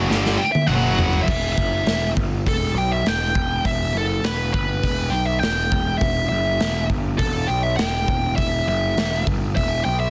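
A heavy, high-gain guitar and an overdriven semi-hollow guitar open this aggressive hard rock excerpt at 102 BPM in E minor, both playing a short riff that moves from Em to F#5 before they drop out at 1.3 seconds. Under them, a growly, fuzz-soaked picked bass sits up front and holds the low end for the whole clip. A big acoustic rock kit comes in almost at once with a drum fill that runs to 1.3 seconds, its punchy kick, medium-tuned snare, toms, hi-hat and bright crash filling a large-sounding space. From 0.4 seconds a dark, distorted lead guitar carries the melody high above, its slapback echo giving each picked note a quick double. The mix is a dense, heavily limited modern master with a small room reverb, in a straight 4/4 feel that stays heavy throughout the roughly ten-second cut.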